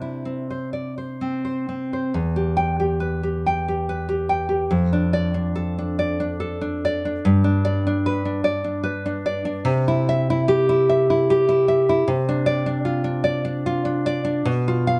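In a flexible, rubato three-four lilt, this romantic piece for solo classical guitar unfolds with a nostalgic, warm mood, cut from a longer work. The fingerpicked nylon-string guitar sits up front with a full-bodied, deep classical tone, ranging from E2 to G5 under a light reverb. After an opening C chord, a new passage begins at 2.1 seconds, drifting through Em, Dm/F and G before returning to C and settling on Dm7/C and a rootless G7/B.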